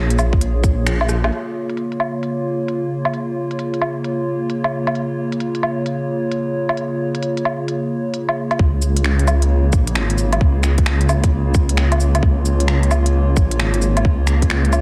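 Future garage with a nocturnal, melancholic mood, this swung 4/4 excerpt rests on a warbling, nostalgic pad of detuned square and triangle tones with a sub octave, sustaining chords with a slow attack, long release, chorus and built-in reverb, and a pumping, lo-fi vintage character. Beneath it, a menacing detuned sawtooth bass with a filter swell and tube saturation pumps along, dropping out at 1.3 seconds and returning at 8.6 seconds. An organic electronic drum kit of cabasa, finger snaps, crisp hi-hats, rim click and woodblock plays through nearly the whole cut, overdriven and darkened by low-pass filtering, with a soft-clipped snare. A tight, overdriven electronic kick sits up front, appearing briefly at the start and then again from 8.6 seconds, after an early band accent and a short drum fill. The harmony moves from Bbm7 to Db6, and the dense, heavily limited master carries a cassette-tape grain and light reverb.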